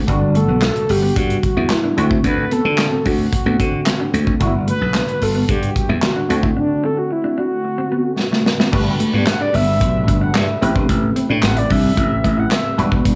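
A straight 4/4 early-eighties boogie funk groove, danceable and feel-good, is driven by a punchy kick, handclaps and a rolled-off acoustic kit sitting up front beside a bright, growly slap bass, while a nasal, detuned polysynth comp with chorus and a dark, clean electric guitar riff with lush chorus in the background support a round, horn-like synth lead carrying the melody with vibrato, chorus and tape echo, all in a light small-room reverb, and a drum fill at 8.2 seconds ushers in a new section at 8.7 seconds in this fragment cut from a longer piece.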